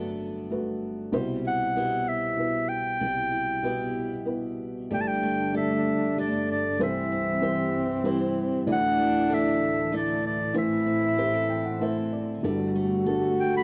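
Acoustic folk-pop ballad in G major at 96 BPM in 3/4, tender and hopeful, cut from a longer piece and captured as a dry, close 1970s-style studio recording in a small room. A soft, felt-muted upright piano with audible action noise sits up front beside bright, fresh-stringed picked steel-string guitar arpeggios with finger squeak, and at 1.5 seconds a mellow, classical-style clarinet takes the melody up front. At 4.9 seconds a clear French horn with vibrato adds a second line while a dark, bowed studio string section holds sustained sul tasto chords with a soft attack.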